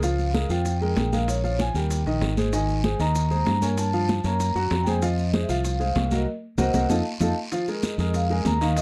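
A round, up-front fingered electric bass anchors this fiery, sultry Afro-Cuban jazz passage, cut from a longer piece. A woody, boxy upright piano with long sustain carries the accompaniment, while a mellow vibraphone played with soft mallets sings the metallic, ringing melody through a slow motor vibrato. Bright, high-tuned congas and low-tuned, saturated bongos sit in the background beside a raspy guiro and distant, grainy maracas, and the band hits an accent from 6.3 to 7.5 seconds with a drum fill in the dry, close 1970s-style studio sound.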